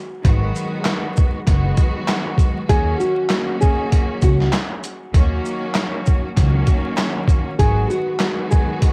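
Up front, a gritty, pitched-down boom-bap drum kit thumps out a swung 98 BPM groove with a compressed kick, medium-tuned snare, handclaps, hi-hat and shaker, all carrying the big-room character and cassette grit of its re-recording. Beneath it, a woody pizzicato upright bass with gut strings sits low until 7.8 seconds, while a lush, bowed symphonic string section with a smooth top and vibrato hangs filtered and tape-worn over dark Eb minor chords moving from Abm7 to Ebm7. At 2.7 seconds a fingerpicked classical nylon-string guitar enters with a narrow melody trailed by tape echo, giving this tough, dusty home-cassette excerpt a layer of vinyl crackle and small-room air.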